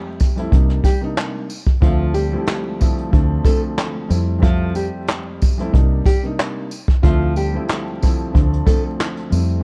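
An up-front jazz brush kit with a boomy kick, handclaps and hi-hat drives this nostalgic, swung boom-bap hip-hop fragment alongside a faint, jingly tambourine set back in a large room, joined from 0.5 seconds by a round, foam-muted fingered electric bass with tube saturation. A mellow, boxy concert grand with a cassette-tape colour comps through Fmaj9, Cm9 and Dm7, while a small, fingerpicked nylon-string guitar carries the filtered melody until 8.8 seconds. The whole mix sits in a small room ambience of worn, warbling tape and vinyl crackle with drifting pitch.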